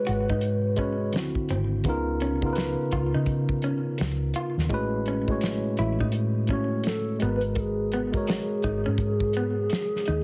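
A hollow, woody clarinet-like synth lead with chorus and slapback echo opens this smooth, soulful neo-soul R&B excerpt over a worn, slightly out-of-tune tine electric piano, then falls away at 1.5 seconds and returns at 6.9 seconds. A swung soul drum kit with a fat snare, tight kick and rolled-off top sits up front beside a dark, round, foam-muted fingered bass, while a slightly broken-up, lo-fi electric guitar through a small old amp adds a picked second line with spring reverb and slapback echo. The mix carries light reverb and a heavily compressed radio sound as the chords move from G#m7 through D9, C#13 and Amaj13 to G#m9.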